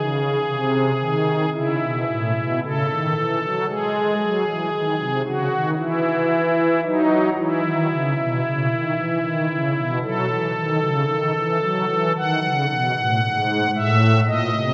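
A solo pipe organ on its shimmering, soft strings celeste stops sits up front in a romantic voicing from G#2 to F#5, carrying this dark, solemn classical chorale-style excerpt in C# minor at a slow 57 BPM in straight 4/4, tuned to A4 = 443 Hz, moving from G#/B# through C#m and G#7(no3) back to C#m before settling on D#dim at 10.0 seconds, all bathed in the long, wet reverb of a church.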